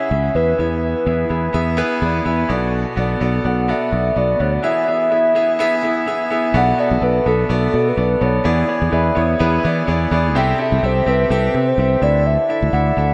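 A hollow, woody clarinet-like synth lead with chorus, vibrato and a diffuse ambient delay carries the melody over a clear, polished concert grand piano and a growly, punchy fretless electric bass in this urgent, nostalgic 1980s-style pop cut at 126 BPM, with a lightly swung 16th feel in B dorian, the whole dreamy mix soaked in a lush hall reverb and the harmony shifting into a second section at 6.5 seconds.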